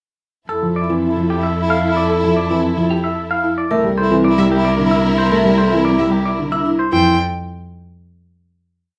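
In a straight 3/4 at 112 BPM, this short classical minimalist pattern piece in F major moves hypnotically and with propulsion from Fmaj7 to C13 before settling on a final Fsus2 chord at 6.9 s. A clean, twangy electric guitar picks a repeated melodic cell over ringing, metallic vibraphone arpeggios with slow motor vibrato, while a clear, close-miked soprano saxophone adds a second line of pulsing notes that swell and fade. A lush symphonic string section holds swelling chords, an expressive cello sits up front with long bowed bass notes and portamento, a dark, boxy baby grand piano repeats its figure in the background with audible action noise, and a smooth solo violin joins at 4.4 s with rich bowed arpeggios, all within a moderate large studio reverb.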